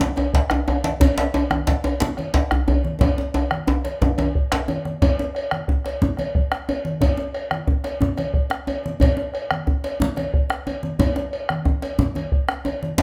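In 12/8, this powerful, festive West African drum ensemble excerpt features bright, low-tuned congas and a deep djembe struck with hard hands, a round, dry bombo up front, a distant metallic cowbell, and a second compressed, saturated djembe that drops out at 4.7 seconds, just as a drum fill running from 3.0 to 5.0 seconds leads into the next section, all played live in one room with light reverb.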